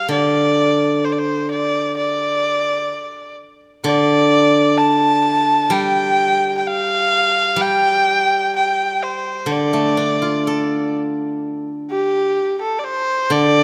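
A moderate concert-hall reverb surrounds this graceful, wistful passage of Chinese traditional chamber music, cut from a longer piece and moving in a free, rubato 4/4 at around 64 BPM in the D yu mode. Up front, a single bowed erhu carries the melody with a nasal, earthy voice, light vibrato and sliding portamento, while a steel-string zither played with fingerpicks sits close beside it, its silvery, ringing tone supplying the accompaniment. Both instruments play throughout, and the music moves into a new section at 11.4 seconds before the clip closes at 13.6 seconds.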